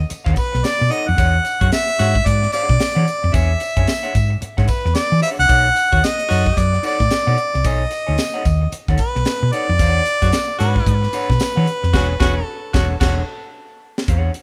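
A swung sixteenth-note funk groove at 112 BPM in 4/4 struts along with energetic swagger, riding a crisp fusion drum kit whose high-tuned snare, punchy kick, hi-hat and crash sound airy and polished, while a jingly tambourine sits in the background until 11.8 seconds. Up front, a round, dark hollow-body short-scale bass played with the fingers anchors the low end, and a bright, twangy electric guitar through a small old amp adds slightly broken-up picked accompaniment further back. A smooth-topped harmonica carries the melody from the start, its solo line sitting forward in the mix. A raspy, gritty tenor saxophone with vibrato cuts in with short, forceful second-line interjections, the longest running from 10.2 to 13.1 seconds. The harmony moves between B9 and E13, and the band hits accents near the end as the drums play a fill, all captured with light reverb and small-room ambience in a rough home-demo mix cut from a longer piece.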